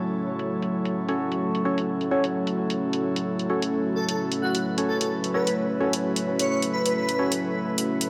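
Opening on a deep, moody pad with built-in reverb and a breathy, chorused pad sustaining an F# minor chord, this gritty, bouncy bass house excerpt at 130 BPM with swung 16ths brings in an overdriven, layered electronic hi-hat at 0.4 s, hollow, wave-folded organ stabs with diffuse delay from 1.1 s, and a soft, dreamy lead with phaser, vibrato and a noise layer at 4.0 s, set in a mix soaked in digital plate reverb.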